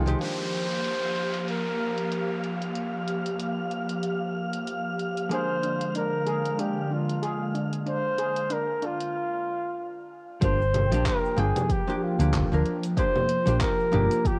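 Swung 16ths at 94 BPM in 4/4 carry this smooth, wistful sunset chillout cut, where a mellow, distant flugelhorn with light vibrato leads over a dark, clean hollow-body jazz guitar with tape echo, an airy, breathy pad with chorus, a low-pass-filtered deep house kit of cabasa, congas, handclaps and hi-hat, an electronic downlifter, a wind-like tuned noise texture and shimmering steel pan arpeggios from 5.3 s, before a break at 9.1 s gives way at 10.4 s to a deep, tape-warm electronic kick and a round, up-front hollow-body bass, the whole set in the light reverb of a home cassette recording.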